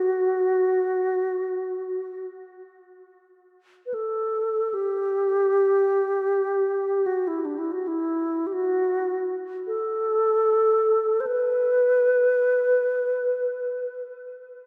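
In free, unmetered time, this Caucasian folk passage, cut from a longer piece, carries a solemn, longing mood through a lone alto flute that plays from 0.0 to 14.0 seconds between D4 and C5. The flute sits up front with a mellow, reedy tone, pure and tongued, with vibrato and rolled-off highs, trailed by a diffuse ambient delay. A lush hall reverb with a 2.5-second decay soaks the mix, giving it a dreamy feel.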